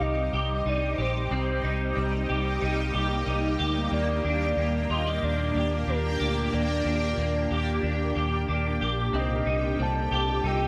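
A haunting, ethereal dream pop excerpt opens all at once with a round, foam-muted electric bass up front, twangy clean electric guitar arpeggios through ensemble chorus and analog delay, a shimmering, detuned ambient pad with phaser and slow-attack sustained chords, and a soft, octave-layered synth lead singing the melody with chorus, vibrato and delay, until a very quiet, ringing fingerpicked kora slips in at 9.1 seconds, all captured in a dry, gritty recording with light reverb.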